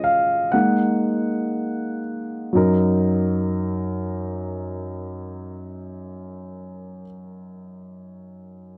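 A polished, up-front grand piano opens alone, slowing down through its first 2.5 seconds over C#add9/G# moving to F#6, then carries on as a present, heartfelt accompaniment in free time in F# major until 8.8 seconds in this short, emotional pop fragment, captured in a dry, close 1970s-style studio sound with light reverb.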